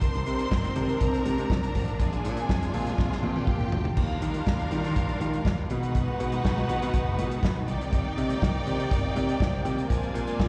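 Heard as a live gig through the venue's PA with recital hall reverb, this celebratory, glamorous disco passage sets a rich, bowed string section holding soft-attack sustained chords beneath a clear, focused second string line touched with slapback echo, while a bright picked electric bass plays direct, a dark, smooth soul drum kit sits up front with a fill from 3.0 to 4.0 seconds, and very quiet thick-skinned congas are tucked beneath.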